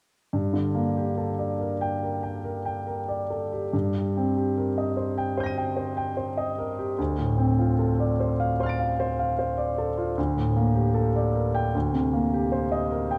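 Mysterious and wistful, this impressionist classical miniature for solo grand piano drifts in a loose, rubato 4/4 that lets each phrase breathe. The piano sits up front, its tone clear and natural, with long sustain that lets chords linger and blur softly into one another. Across its span from low bass to high treble, the harmony moves through colorful minor chords with added ninths and sevenths, shifting from a Gmadd9 through Cm7 and Dm7 before settling over a D in the bass. The instrument plays alone from 0.3 seconds to 13.2 seconds, framed by a concert hall reverb that adds depth and air. The overall production leans dark, giving this short fragment of a longer work a shadowy, introspective glow.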